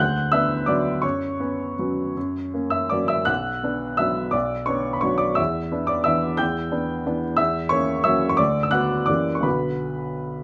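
Classical piano waltz in B minor, bittersweet and elegant, flowing in rubato 3/4 at roughly 145-192 BPM, with a solo upright piano of woody, vintage tone and long sustain sitting up front under close, detailed microphones and light reverb, ranging from B1 to G6 as it moves from Bm/D through F#sus4, Em7 and F#7b9 to settle on Bm at 9.5 seconds in this brief passage cut from a longer piece.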